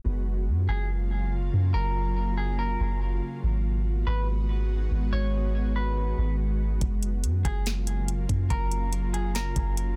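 Over a half-time 4/4 pulse, this hazy, spacious cloud-rap hip hop excerpt floats on a detuned, airy pad with ensemble chorus, built-in reverb and sidechain pumping, while a round, deep 808-style bass sits up front beneath it. A clean, scooped semi-hollow guitar carries the melody through digital delay. A smooth, electronic R&B kit with a knocking kick, sharp snare and metallic hats arrives at 6.8 seconds, all within a dry, dense, heavily limited modern master marked by a tape stop.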